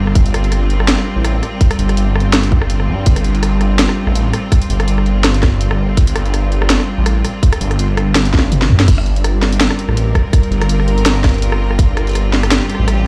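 A thick, swirling detuned saw bass with phaser and tube saturation sits up front throughout this heavy, spacious half-time drum and bass excerpt in G minor at 165 BPM, joined by a tight layered electronic kick and a kit with a cracking snare, hi-hat, rim clicks, toms and crash, while a distant, biting symphonic string section holds sustained chords with light vibrato and sidechain pumping, all inside a large reverberant space, with a drum fill at 8.3 seconds leading into a second drop at 8.9 seconds.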